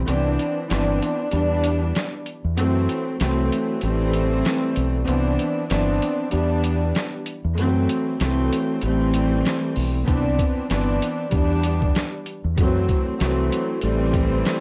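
Moody and dark, this boom-bap hip-hop cut has a swung 16th-note feel and a dry, gritty sound with vinyl crackle, circling a Cmaj9, Em7, F#m7b5, Am7 progression. A deep, round fingered electric bass sits up front beside a pitched-down, compressed sampler-style drum kit with a thumpy kick, medium-tuned snare, rim click and hi-hat. A close, intimate studio string section plays bowed sul tasto with light vibrato and a soft attack, its sound filtered and carrying a cassette-tape tone.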